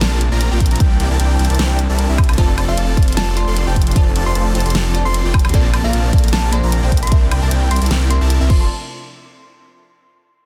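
Dense, heavily limited and drenched in digital ambience, this lush, euphoric future bass drop in half-time swing pairs a thick, detuned saw bass and a punchy kick up front with huge, bright supersaw chords run through phaser and tape echo, a fat-snared pop kit with woodblock and crash, an airy, dreamy arpeggiated lead, dark, distant symphonic strings, and, from about 2.4 and 2.7 seconds respectively, glassy digital keys and a sparkling, bell-like FM electric piano melody with dub echo, everything but the drums and strings pumping to the sidechain over Bbmaj9, C9 and F6 chords.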